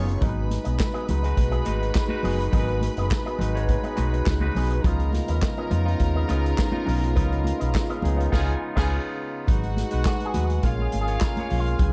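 A round, amped fingered electric bass sits up front in this sultry, danceable disco groove at 104 BPM in G# dorian, moving between G#m7 and C#9 over a punchy vintage drum kit with dark cymbals and handclaps. A barky tine electric piano through a phaser, a dark, compressed envelope-filtered guitar bathed in spring reverb, a reedy bowed string section with a gut-string tone, and a smooth-topped French horn section holding sustained chords fill out the arrangement. Bright congas sit in the background, and a crisp, very quiet group handclap joins them. After a band accent at 8.3 seconds, a clean electric guitar solo enters at 9.5 seconds in this dark, warm, mostly dry production cut from a longer piece.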